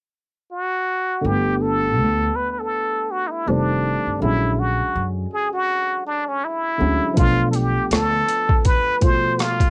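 This jazz-hop excerpt is hip hop with a smooth, relaxed mood and a gentle swung lilt. A plunger-muted trumpet opens at 0.5 seconds as the up-front, close-miked solo voice, its clear wah-wah tone carrying light vibrato and scooped notes through a cassette-tape coloring. At 1.2 seconds a dark upright piano enters with mellow, woody accompaniment, joined by a pizzicato upright bass whose gut strings sound thumpy and warm, though the bass falls away before the close. The harmony moves from Gadd9 through F7 and Bb7alt to Bm7b5. A compressed, pitched-down, gritty boom bap sampler-style drum kit arrives at 7.2 seconds, bringing hi-hat, rim click and a thumpy kick with overdrive and vintage 12-bit grit, re-recorded in a large room. Light reverb and a home cassette recording give the whole piece a cozy, lived-in feel.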